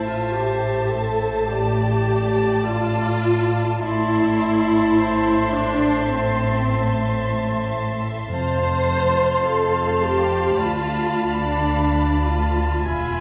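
A slow, rubato 4/4 pulse at 53 BPM carries this elegiac, melancholic A minor orchestral movement, cut from a longer piece, as a close, lush violin section sings the high melody with vibrato and portamento while a more distant second violin section holds a smooth, even line beneath. A clear oboe adds its own line, an airy, hollow flute and a roomy clarinet add further lines from the background, and an up-front viola section shapes an expressive accompaniment over bowed cellos and woody double basses. The harmony moves from Am to F at 8.4 s and Bm7b5/D at 10.6 s, bathed in the reverberant acoustic of a recital hall.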